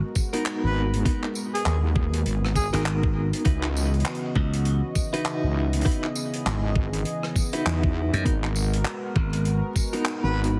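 A heavy, saturated wobble bass anchors this swaggering, funky glitch hop excerpt with a swung feel, joined at 2.7 seconds by a growly, punchy slap bass, over a knocking, tape-warm electronic kick and an airy studio kit of handclaps, hi-hat, rim click and tambourine, while a clean, twangy electric guitar plays stabs with tremolo and delay, a dark, smooth analog pad sustains chords with chorus, both guitar and pad pumping under sidechain, and a distant, jazz-style harmonica with scooped notes plays a brief melody from 0.6 seconds, all within a heavily compressed radio sound laced with vinyl crackle.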